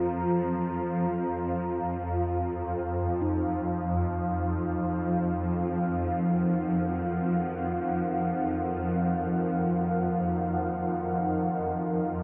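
Opening on a deep, moody pad of sustained, chorused chords alongside a swarming, warbling drone with phaser, this short dark ambient excerpt drifts in free time through a dreamy plate-reverb wash, where a ringing, metallic bronze singing bowl enters softly in the background at 3.2 seconds as the harmony settles onto Ebm/F, leaving a vast, ominous mood.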